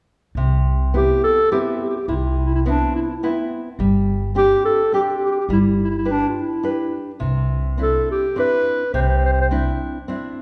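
A woody, thumpy pizzicato upright bass opens at 0.3 s, joined by fingerpicked classical nylon-string guitar and then a mellow, up-front clarinet carrying the melody from 1.0 s in this romantic, lively Italian folk serenade at 105 BPM in 3/4 and C major, moving through Cmaj7, Gsus4, G and Cadd9 in a reverberant recital hall.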